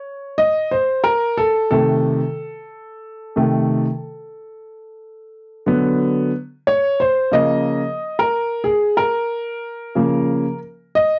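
Smooth and warm, this short hip hop excerpt cut from a longer piece features a solo concert grand piano, deep in the bass, vintage and up front through cassette tape, moving at 91 BPM with a swung sixteenth-note feel over chords from Cm6 to D6 and on to Db69 at 6.3 seconds, heard in a moderate booth ambience on a home cassette recording.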